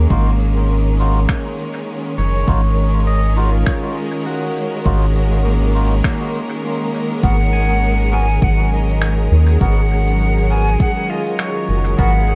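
The recording is dark and dry, with a vinyl crackle lying under everything, in this hazy, spacious slice of ambient dub cut from a longer piece. A round, deep analog bass sits up front, its square-and-sine tone thickened by tube saturation, while a soft, tape-toned electronic kick and a small-room shaker and finger snaps, the latter trailing dub echo, carry a lightly swung groove. A rich, bowed studio string section holds sustained chords with focused vibrato, and a brilliant, twangy pedal steel guitar plays arpeggios with fingerpicks, slide and volume swells, its notes repeating through dub echo. A reedy, nasal melodica adds mellow stabs in the background. At 7.2 seconds, as the harmony shifts, a distant silver concert flute takes up an expressive melody with a crisp attack and pure, vibrato-laden tone, and from 8.0 seconds a reversed, detuned granular texture swells dreamily behind it in its own reverb.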